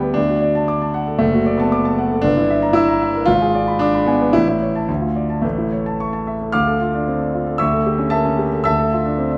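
Classical virtuoso piano study in D minor, stormy and passionate, moving at a rubato 106-118 BPM in 2/4 across this short 9.4-second fragment of a longer piece. A solo concert grand, intimate and up front with deep bass, a smooth vintage tone and audible action noise, spans F#1 to F6, moving through D, D/F#, Em7b5/G and G#dim7 to a pull between A and Dm. At 6.5 s a new section settles on Dm and A7/D, all bathed in a wet recital hall reverb.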